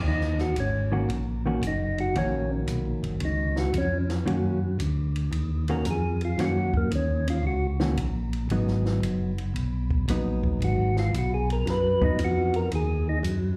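A lightly overdriven tonewheel organ opens this bluesy, soulful soul jazz organ trio excerpt with a full, key-clicking bass line in Eb minor, swinging at 114 BPM over Ebm7 before moving to Abm7 at 8.5 seconds. A percussive tonewheel organ carries the melody up front with a mellow, round tone through a slow rotary speaker and slapback echo, while a compact cocktail drum kit with dark cymbals, a high-tuned snare and a tight kick keeps a dry, natural pulse. From 0.9 seconds a clean, compressed hollow-body jazz guitar adds fingered accompaniment with its own slapback echo, and the band is heard as a live gig through the venue's PA with club reverb.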